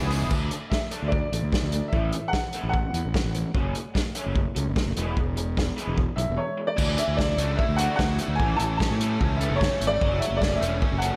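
Indie rock excerpt at 149 BPM with a carefree, jangly mood: a raw garage guitar riff with overdrive and analog chorus sits in the background over an up-front, dark, round fuzz-fingered bass and a vintage drum kit with a punchy kick, dark cymbals and a rolled-off top. A biting, bright overdriven guitar riff with analog chorus and delay flashes briefly at the opening. A clear, woody upright piano melody enters at 0.7 seconds and returns at 6.2 seconds through lush chorus and delay, and the biting guitar riff comes back at 6.8 seconds, all set in a dreamy mix soaked in plate reverb.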